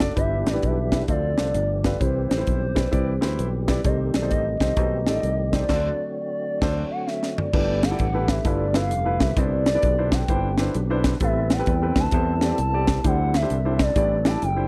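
Uptempo gospel at 130 BPM in G major, swung and soulful, with a reverent glow, heard as a section cut from a longer piece. A crisp, high-tuned snare and punchy kick sit up front with hi-hat, crash and toms, alongside a growly, direct fingered electric bass that anchors the low end. A grand piano with short sustain carries the accompaniment, while a fat, lightly overdriven tonewheel organ holds sustained chords in the background, its key click and percussion colored by slow rotary speaker and chorus vibrato. From 0.2 seconds a smooth, mellow gliding lead with portamento, vibrato and chorus sings the melody over changes that move through Cmaj7, Cm6 and D7. The band hits an accent from 5.7 seconds, capped by a drum fill that leads into a second section at 7.5 seconds, where richer chords like Cmaj9, Am9 and D9sus4 unfold in a dry, close studio sound with a touch of reverb.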